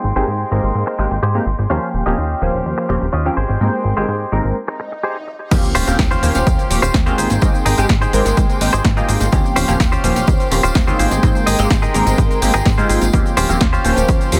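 An echo-heavy mix with light reverb and digital ambience carries this sunny, feel-good stretch of filtered disco house, cut from a longer piece. A warbling, detuned polysynth comp, a plucky sawtooth bass up front, a twangy direct-recorded clean guitar riff and a reedy chamber violin section holding sustained chords all pump under sidechain compression behind a low-pass filter sweep. After a short break with a very quiet electronic swell, the drop lands at 5.5 seconds with a faint impact, an overdriven analog kick up front, a layered house kit of punchy snare, tape-warm hi-hat, crash and cabasa, and a small-room tambourine in the background.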